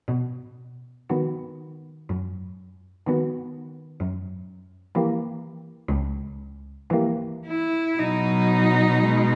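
A single bowed cello opens this serene classical fragment at 0.1 s, laying down a low bass line, and at 1.1 s three more cellos join, one player to each part. The melody cello sings up front in the upper register, and like the bass cello it has a rich, smooth and even tone with vibrato and a distant quality. Beneath it, a dark cello carries an expressive second line with vibrato and portamento, sounding close and up front until it drops out at 7.8 s. A warm cello fills in the accompaniment with soft attacks, vibrato and gliding portamento, adding to the tender mood. The rubato phrasing moves in an unhurried four-beat metre, and the ensemble sits in a recital hall with a lush, lingering reverb, heard from further back in the room. The passage settles into a short new section at 8.0 s before the excerpt ends at 9.4 s, cut from a longer piece.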